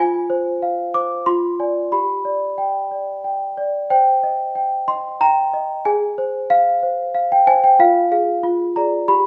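A solo celesta, bell-like and delicate with the airy ring of hard felt hammers, sits up front in this wistful, eerie classical lullaby, moving at 92 BPM in a straight 3/4 across a range from F4 to D6. Its harmony passes through Fm, G, Cm and Fm/Ab before settling on Fm and a closing Ddim/F, all heard within a moderate recital-hall reverb. The 9.3-second passage is cut from a longer piece.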